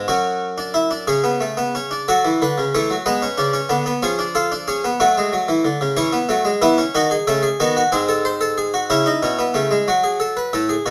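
A classical, baroque-style fugue in three voices, this short passage is cut from a longer piece and carries a stately yet lively mood in a straight 6/8. A solo harpsichord of Italian style carries every line, its plucked tone brilliant and bright with the added shimmer of octave strings, reaching from the low bass up into the treble. The instrument sits up front in the mix, surrounded by a moderate stone-room reverb that lends the counterpoint a resonant, airy halo. The harmony moves through minor and major chords and diminished passing sonorities before settling on C# minor at 8.9 s. The opening material returns at 9.9 s, closing the fragment with a firm minor-key resolution.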